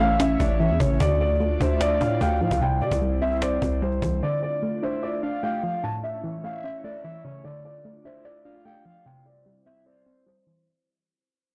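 Menacing and brooding, this half-time trap cut sits at 149 BPM in D minor, moving through a dark cycle of A, Dm and C. A felt-muted upright piano carries the melody up front, its mellow, boxy tone softened by a low-pass filter and digital delay, with the action noise audible. Beneath it, a soft octave-layered synth lead traces a second line with vibrato, chorus, phaser and delay. A round, gentle pluck and an airy, breathy pad hold the accompaniment and sustained chords. A growling, buzzy 808-style bass and a snappy, close cajon played with hard hands drive the opening, dropping out at around 4.2 and 4.1 seconds. The whole passage sits in a small room with light reverb, blown-out and overdriven with lossy artefacts, under a filter sweep and a fade-out that run its full 10.7 seconds.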